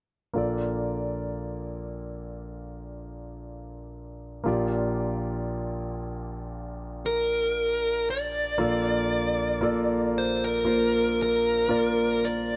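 A dark, smooth lead guitar carries the melody in this short pop fragment, entering at 7.1 seconds with an electric, overdriven, picked tone that sits up front in the high register. Beneath it, a concert grand piano supplies the accompaniment from the opening moment, clear and intimate, with audible action noise, deep bass and long sustain giving it a polished, present character. The harmony moves from Bbmaj7 to Gm7/Bb and back to Bbmaj7 at 8.6 seconds, where a new section begins and the guitar and piano share the stage. The mood is emotional and longing, unfolding at a slow, straight pace in four. A light, small-room reverb and a dark, warm production keep the sound close and cohesive, and the passage is cut from a longer piece.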